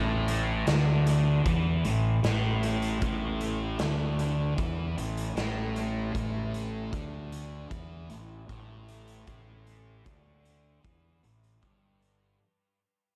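A thick, double-tracked fuzz guitar and a fingered electric bass open this trippy, hypnotic psychedelic rock excerpt together at 0.0 seconds, sounding an A5 chord at a slow 77 BPM in straight 4/4, tuned slightly low to A4 = 439 Hz. The distorted, picked guitar riff sits up front in the low register, coloured by phaser and a dub echo that trails behind it. Beneath it, the overdriven bass is punchy and direct-and-amped, its growl reaching down to G1. A raw garage drum kit of hi-hat, kick and snare joins at 0.3 seconds, its punchy kick and medium-tuned snare gritty and saturated in a bright stone room that pumps, with a rolled-off top and its own dub echo. The echo-heavy mix carries light reverb and small room ambience, and a fade-out runs across the entire passage, which is cut from a longer piece.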